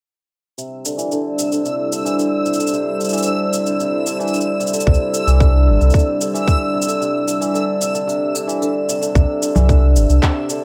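A shimmering, ringing hammered dulcimer plays low arpeggios through a filter sweep and delay in this pastoral, hopeful folktronica excerpt at 112 BPM in C major, set over a warbling, lo-fi pad of sustained chords with phaser and sampler grit, a dreamy reversed swelling texture high above, and tape-toned electronic cabasa, congas and handclaps, with a tight electronic kick and round sine sub bass entering at 4.9 seconds before a break from 7.0 to 9.2 seconds.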